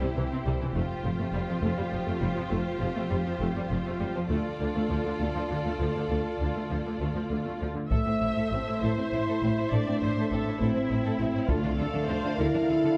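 Strings in D minor open this heroic, relentless excerpt of an epic orchestral film score in a slow 6/8 at 67 BPM: a lush, vibrato-rich violin section carries a distant second line over intense violas, focused cellos and clear double basses through a building passage, until at 7.9 seconds a focused violin melody, warm French horn chords and heavy-sticked taiko drums arrive, with soft calf-head timpani touching in at 11.5 seconds, all set in a dark scoring-stage reverb.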